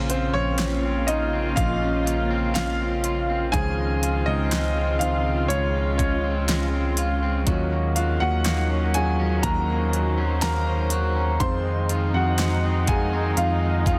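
This short excerpt has a dense, heavily limited modern sound with light reverb, framing an emotional, hopeful pop ballad in a slow, straight 4/4. A baby grand piano carries the lead across the whole 14 seconds, its tone open with long sustain and placed up front. Beneath it, a mellow tine electric piano holds down the bass, sounding worn and slightly out of tune yet clean and direct. Con sordino strings add dark, veiled sustained chords with light vibrato, while an electric guitar at the edge of break-up plays twangy, compressed arpeggios with subtle chorus in the background. A layered electronic pop kit joins at 0.1 seconds with a knocking kick, fat snare and crisp hats as the harmony moves through Bbmadd9, Dbmaj7, Ebm7 and Fm7.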